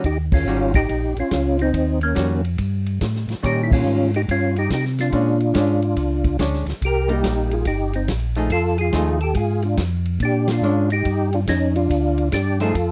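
Soul jazz organ trio in a bluesy, greasy swing, cut from a longer piece, with the whole band hitting accents at 0.2, 3.6 and 10.4 seconds. A percussive tonewheel organ carries the melody with third-harmonic percussion, chorus vibrato, slapback echo and a slow rotary speaker, while a mellow, round tonewheel organ with audible key click plays the bass line through its own slow rotary speaker. A clean, hollow-body archtop guitar comps underneath, and a vintage acoustic kit with dark cymbals and a tight kick keeps time, all captured in a dry, close 1970s-style studio sound.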